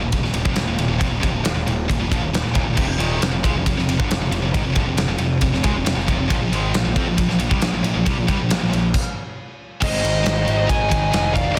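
An aggressive, heavy metal excerpt at 136 BPM opens on a high-gain, bright rhythm guitar riff joined by a tighter distorted guitar sitting in the background, a growly, punchy fuzz bass and a big acoustic rock kit placed up front with a tight, softly clipped kick, medium-tuned snare, crash and ride, all moving over Eb5, F5 and Bb5 power chords. After a stop from 8.9 to 9.8 seconds, the music shifts to Ab as two high-gain lead guitars enter, a warm upper melody over a darker second line further back. The small room ambience and dense, heavily limited modern master keep the sound thick and forceful until the cut at 11.6 seconds.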